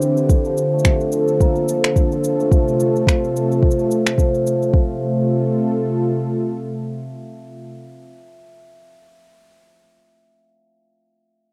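A dry, close recording with a 1970s studio character and light reverb frames this pastoral, playful folktronica excerpt in F major, set at 108 BPM in 4/4 with a swung sixteenth-note feel. Up front, a shimmering, ringing cimbalom plays hammered arpeggios through a low-pass filter and tape echo, beside a smooth, detuned sawtooth pad with chorus holding soft-attack chords that move from Bbmaj7 to F. An overdriven electronic kick, soft yet close, drives the groove with overdriven electronic shaker and finger snaps until the drums drop away by 4.9 seconds; the pad stops at 7.7 seconds, leaving the cimbalom alone until 9.8 seconds.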